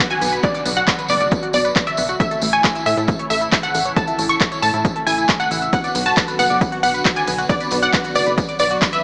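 A detuned, up-front unison pluck carries the melody of this soaring, euphoric uplifting trance excerpt from the start, over a silky, string-like analog pad in the background and a tight sequenced synth playing phased, tape-echoed arpeggios, with all three pumping under sidechain across a Bm, A, Bm progression. At 0.1 s, a very quiet downlifter arrives with an overdriven big-room kit of crisp hats, handclaps and ride, plus a jingly, vintage tambourine; a dark, sawtooth sequencer bass with tube saturation follows at 0.2 s, and a punchy electronic kick at 0.4 s. A lush hall reverb adds space, though the mix has a small-speaker sound.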